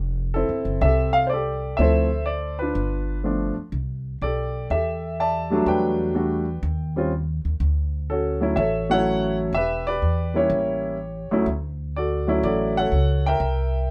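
A grand piano carries the melody from 0.3 seconds, its natural, up-front tone ranging from deep low notes to bright upper lines in this playful jazz piece in D major. Beneath it, an acoustic upright bass plays pizzicato from the very start, its woody steel-string sound sitting close and slightly below the piano in level. The tune moves at 124 BPM in 4/4 with a swung eighth-note feel, and the harmony drifts through rich colors such as Fmaj9, Dm9, C69 and Em11 before an A7b9 leads into a new section at 11.5 seconds. There, a Dmaj7 settles briefly before a C7 hints at more to come. Light reverb gives the duo a warm, intimate room sound, and the fragment ends abruptly at 13.9 seconds as a cut from a longer performance.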